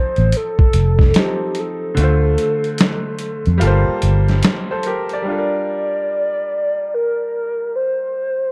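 A warbling, detuned lead with chorus and vibrato carries the melody up front, mellow and nostalgic, over a bright, woody upright piano in this hazy lo-fi hip hop excerpt in G minor at 73 BPM with a swung 16th feel. A dark, round, foam-muted electric bass and a gritty, pitched-down boom bap kit with a thumpy kick, medium-tuned snare and hi-hat join at 0.2 s, though the kick soon falls away. The bass stops at 4.4 s and the drums at 5.2 s, leaving lead and piano to drift through the Gm7 close under light reverb and a dark production.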